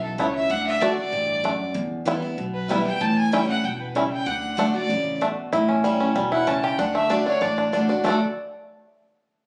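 A rich, earthy bowed fiddle carries the melody from the first moment of this driving, virtuosic bluegrass excerpt, over a bright, full-bodied picked dreadnought guitar and a woody, thumpy pizzicato upright bass on gut strings, with a twangy, percussive fingerpicked banjo joining the lead at 0.2 seconds. Fiddle and banjo both carry plate reverb and sit up front with the guitar, moving through a plain D, Em, A7 progression that shifts its footing at 5.5 seconds. The sound is that of a phone capturing the band in a club, with the room's reverb and compression around the players.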